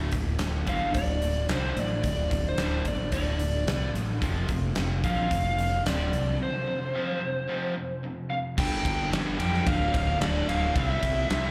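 Driving and heavy, this hard rock excerpt in a straight 4/4 captures a live gig heard through a venue's PA, with club reverb and light studio ambience around the band. Up front, a huge arena drum kit hits with a punchy kick, fat snare and bright crash, hi-hat and ride, its pumping room sound filling the hall, while a fuzz-drenched fingered electric bass growls low beneath it. Two rhythm guitars share the riff: a bright, overdriven semi-hollow guitar with slapback echo sits in the background, and a dark, sludgy distorted guitar lies very quiet underneath. From 0.7 seconds a biting lead guitar carries the melody high over the band, overdriven and picked, with its own slapback echo. The chords move from D5 to F5, then shift to G5, D5 and C as a new section opens at 8.6 seconds, following a break that begins at 6.4 seconds.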